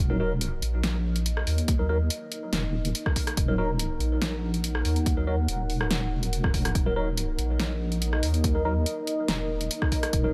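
This excerpt has a cavernous, meditative sound under light reverb, with a deep, wobbling bass sitting up front and a detuned, sawtooth-edged pad glowing darkly behind it. It is deep dubstep at 142 BPM in 4/4 with a half-time feel, holding on Eb minor in Eb phrygian throughout its 10.3 seconds. The soft wobble bass, warm and compressed with chorus, sounds from the very start, while the slow-attack ambient pad sustains chords with a sub octave, chorus and its own built-in reverb. A clean tine electric piano adds stabs through phaser and dub echo, its tone heard as if through built-in speakers. The deep house drum kit enters at 0.4 seconds with hi-hat, rim click and a fat snare, and a deep electronic kick joins at 1.7 seconds, both tape-tinged and re-recorded in a small room, placed up front.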